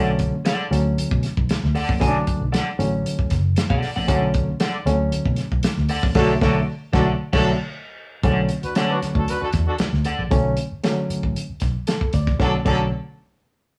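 Sly and hypnotic, this funk cut sits in B minor at 116 BPM in a straight 4/4, opening on a Bm7 chord and feeling like a slice lifted from a longer piece. A barky, reedy electric piano sits up front with stabs, lightly overdriven and pulsing with tremolo, while a twangy electric guitar on the edge of break-up adds picked accompaniment shimmering through harmonic tremolo. Underneath, a vintage muted fingered bass gives a round, punchy, foam-muted low end, and a soul drum kit with a fat snare, tight kick and dark, rolled-off cymbals keeps a dry, muffled, lo-fi pocket close to the listener. At 6.2 seconds a distant, roomy horn section joins with a second line carrying light vibrato, arriving on a band accent, and the electric piano slips in a fill at 11.6 seconds before the next section turns over. The whole band sounds like it is playing live together in a small room, with a wet studio reverb giving the space a short tail.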